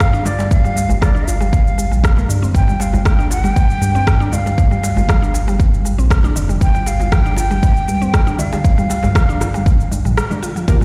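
A breathy bamboo bansuri with vibrato and digital delay opens this spiritual afro house excerpt over an up-front electronic kick, a dark, smooth synth bass with sidechain pumping, a layered deep house kit of rim click, shaker and toms, and a djembe sitting in the background. A woody, round mallet-like synth pluck soon adds arpeggios with chorus and delay, ringing congas played with soft hands join very quietly, and the bansuri drops out at 9.9 seconds ahead of a short break. A soft, mellow chord stab with chorus lands at 10.7 seconds as the cut ends, the mix carried by a light, large-studio reverb.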